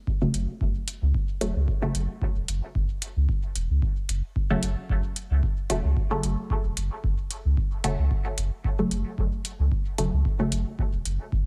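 A pure sine sub bass sits up front in this cavernous, meditative dub techno excerpt, deep, clean and smooth, its fast attack giving way to sustained, dark tones that pump against the sidechain from 0.2 seconds. Above it, a filtered dub chord stab on F# minor, built from detuned sawtooth and square waves, lands with a muted filter pluck and short decay, colored by phaser and trailed by dub echo, with its own sidechain pumping. An analog electronic kick drum, deep and up front, drives the 4/4 groove from 0.1 seconds, re-recorded in a large room. Metallic analog hi-hats, also carrying that large-room character, tick along with a light swing on the sixteenths from 0.3 seconds. The overall mix stays dry, with little reverb, leaving the bass and stab to fill the space across this single unbroken section.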